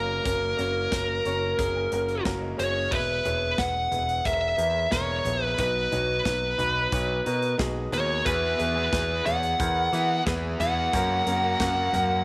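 A dark, up-front fuzz lead guitar carries the melody with slapback echo over a clear, vintage grand piano. The piano plays a fill from 0.9 to 2.9 seconds. Beneath them sit an overdriven picked electric bass and a polished, airy studio drum kit with a punchy kick, and a bright, crunchy overdriven guitar riff joins at 8.3 seconds. Together they make an anthemic, piano-driven pop excerpt at 90 BPM in straight 4/4, moving through F#, E and B in a small, lightly reverberant room.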